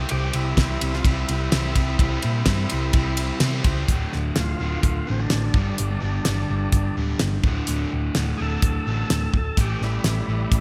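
A straight 4/4 groove from a dry, damped 70s drum kit, with a fat snare and tight kick up front, anchors this gritty, swaggering classic rock excerpt alongside a round, punchy hollow-body short-scale bass. Two overdriven guitars play the riff, one crunchy and one raw garage guitar sitting in the background, both with slapback echo, while the chords move from C to Dm and on through G5, D5 and A5. At 3.9 seconds a thick, overdriven tonewheel organ with slow rotary speaker and tape echo takes a solo that runs to the end of the cut.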